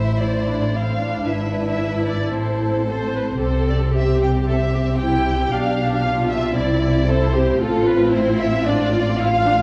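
Classical-period string orchestra movement, quick and spirited with a cheerful, rubato lilt, where a dark, woody first violin section carries the melody up front, a rich, expressive second violin line and lush viola accompaniment fill the middle, and a soft-attacked cello section with expressive portamento joins a warm, focused double bass section to anchor the bass, all set in a moderate scoring-stage reverb through chords moving from Am and E7/G# to C, G7/B and F/A.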